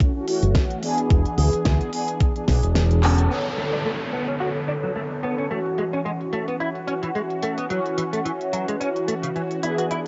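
A swung nu-disco groove in 4/4 at 109 BPM opens with a thumpy electronic kick and a layered pop kit of fat snare, crisp low-passed hats and handclaps, while an up-front fingered bass with an envelope filter pumps beneath mellow, detuned sawtooth synth brass dressed in chorus, phaser and tape echo, setting a cosmic, sensual B dorian mood. The kick falls away just before a drum fill at 3.0 seconds, and at 3.3 seconds the bass gives way to a clean, compressed direct-recorded guitar riff with ensemble chorus and tape echo, over a faint downlifter and a filter sweep on the drums. Cut from a longer piece, the lo-fi cassette home recording caps out at 7.7 kHz in a moderate spring reverb as the harmony moves from F#m7 and E7 to Bm9, A6 and F#7.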